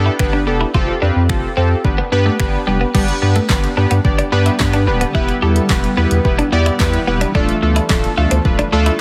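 A straight pulse from a deep house drum kit, with its deep kick, punchy snare, handclaps, finger snaps and hi-hat set up front, drives this confident, driving dance-pop excerpt, while a saturated, thick sub bass pumps under sidechain from the start. Vintage analog keys with a warbling, detuned sawtooth tone and a filter sweep carry the chords, and a bright, twangy twelve-string electric guitar picks a clean riff through lush chorus. At 4.5 seconds a cloudy, evolving granular pad enters in the background, its blurred chords adding depth to a heavily compressed, radio-like mix with light digital ambience.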